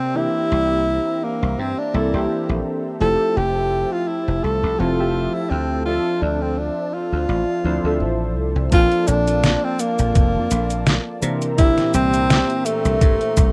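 Vaporwave with a dreamy, faded mood, this short cut from a longer piece features a breathy, close-miked tenor saxophone singing a jazz-style melody with vibrato, scooped notes and analog delay over warbly, detuned lo-fi synth keys with chorus and 12-bit sampler grit, a very quiet, lush unison pad holding sustained chords, and a bright, punchy thumbed slap bass. At 8.7 seconds a thumpy electronic kick and a detuned 8-bit drum machine with snare, hi-hat and cabasa enter up front as the chords move from Bbmaj7 to C7. The rough home-demo mix carries cassette-tape character and light reverb.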